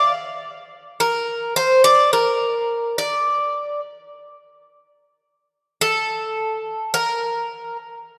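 A solo Greek bouzouki, bright and metallic with its doubled strings ringing up front, picks a moody, bittersweet Greek folk line in free time between A4 and D5, its phrase heard twice over about 8 seconds and bathed in a lush hall reverb that gives this rough home-demo fragment its long, wet tail.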